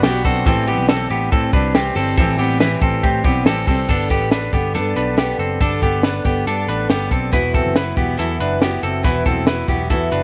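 A compact cocktail drum kit sits up front from the start of this bright, nostalgic jangly indie pop excerpt, its punchy kick and high-tuned snare set against dark cymbals, while a dreadnought steel-string acoustic guitar gives full-bodied picked accompaniment. A clean semi-hollow electric guitar, also prominent in the mix, plays arpeggios coloured by a warbly pitch drift and slapback echo, over a round, foam-muted vintage electric bass. The harmony moves from Am7 to Gadd9 at 3.9 seconds and Esus2 at 7.3 seconds, all within a light studio reverb.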